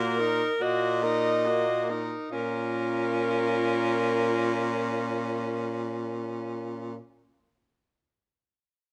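In a slow, rubato 3/4 at 37 BPM that slows over the first 2.3 seconds, this solemn, elegiac classical fragment for single-reed quartet in Bb minor sets a mellow clarinet melody over a bright, smooth-topped alto saxophone second line, a distant, roomy tenor saxophone accompaniment with vibrato, and a warm, close-miked baritone saxophone bass held up front, all within a moderate stone-room reverb as the harmony moves from Ebm/Bb to Bbm at 2.3 seconds.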